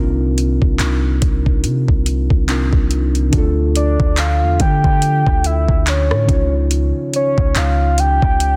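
Muted, felt-like synth keys with a dark, intimate tone and a soft chorus open this tender, dreamy contemporary R&B fragment, joined at once by a deep, boomy 808-style bass with a mellow sine body. At 0.4 seconds a smooth electronic drum kit arrives up front, with a knocking kick, metallic hi-hats, handclaps and rim clicks, all carrying a tape-like glow. The groove sits at an unhurried 71 BPM in 4/4 with a gentle swing on the sixteenths, moving through Cm11, Dmadd9 and Dbadd9. At 3.8 seconds a soft, octave-layered synth lead takes the melody in the upper register, round and full, with chorus and vibrato giving its sustained notes a dreamy shimmer. A digital ambience surrounds the parts, and the dense, heavily limited modern master keeps the sound close and polished.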